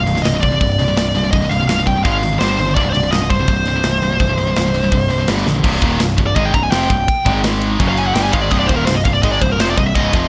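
A high-gain lead guitar, warm in tone and up front, carries the melody in this epic, heavy metal passage in C minor at 167 BPM. Two picked, distorted rhythm guitars, one of them scooped, play a low riff in the background, and an overdriven, growly electric bass anchors the low end with a direct, amped sound. A metal drum kit enters almost at once, polished and airy in a big room, with bright cymbals, a medium-tuned snare and a tight kick sitting up front. The straight 4/4 feel carries the chords through C5, Ab5 and G5. A drum fill at 5.5 seconds leads into a guitar solo from 5.6 seconds, over harmony moving between C minor, Ab5 and F#5. Light reverb lends some space to this cut from a longer piece.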